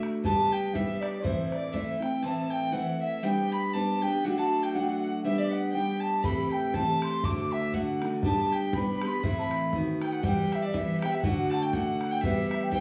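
This Celtic folk polka, cut from a longer piece, has a wild, dark and lively character, with a swung lilt to its eighth notes. A baroque flute carries the melody with a pure, woody straight tone and crisp attack, set in plate reverb. A single bowed fiddle plays a second line in the same upper register, its gut-string sound nasal and reedy. Sitting up front, a picked jumbo steel-string acoustic guitar supplies bright, full-bodied accompaniment beneath them. A boomy, open bodhran drives the opening, drops out at 2.1 seconds and returns at 6.2 seconds to carry through to the end. The ensemble is heard from further back in a small, reverberant room, and the harmony shifts toward E minor in the closing section from 10.2 seconds.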